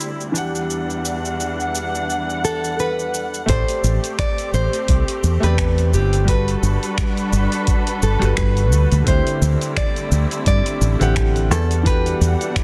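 Bathed in light digital ambience and a dense, heavily limited modern master, this smooth, warm sunset chillout excerpt in A dorian at 86 BPM with a swung sixteenth feel opens on an intimate grand piano with audible action noise and tape echo, lush veiled con sordino strings, and an overdriven deep house kit of cabasa, finger snaps and hi-hat, before a fingerpicked nylon-string guitar melody with digital delay enters at 2.4 seconds and a foam-muted, up-front fingered electric bass and a gritty, thumpy electronic kick join at 3.5 seconds over Em9, Am11, Gmaj9 and D9sus4 chords.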